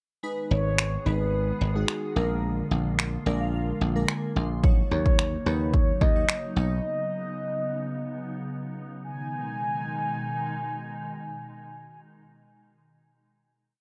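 Driving and confident, this short dance-pop piece moves at 109 BPM in a straight 4/4 in G# minor, passing through G#m, A#7, D#m7 and Badd9 before settling back on G#m for a final held chord from 9.0 seconds. A punchy analog drum machine sits up front with a tape-warm kick and finger snaps in a syncopated pop beat, joined by a dry, foam-muted thumbed slap bass playing bright off-beat lines that anchor the low end up front. Glassy digital keys with a sine tone, filter sweep and chorus supply fast-attack, decaying chord stabs in drop2 voicing, adding a fill between 3.0 and 4.6 seconds, while a glassy, ethereal FM pad with slow attack, ensemble chorus and built-in reverb holds sustained chords underneath. Over the top, a round, horn-like sawtooth lead with soft attack, vibrato, filter sweep and chorus carries a motif-based melody of call phrases. The keys, pad and bass all pump against the sidechain, and once the drums stop at 6.4 seconds and the keys and bass at 6.8 seconds, only the pad and lead ring on to the close in light reverb.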